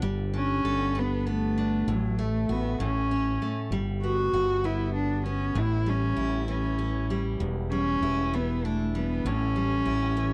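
A bowed cello carries the melody from 0.4 seconds, played by a single player sul tasto with light vibrato and a soft attack, so it sounds intimate and close. This short passage, cut from a longer pop piece, moves slowly at 65 BPM in a straight 6/8, counted in dotted quarters, with a tender, romantic mood and tuning set to A4 = 438 Hz. Beneath it, a picked steel-string dreadnought acoustic guitar plays full-bodied accompaniment, and a fretless electric bass adds a punchy, direct, amped low end; both play from the very start. The harmony drifts from Gadd9 through F#madd11/A, A and Gmaj7 to A7, Em7 and back to A7. All three parts sit up front in a dry, close 1970s-style studio sound touched by light reverb.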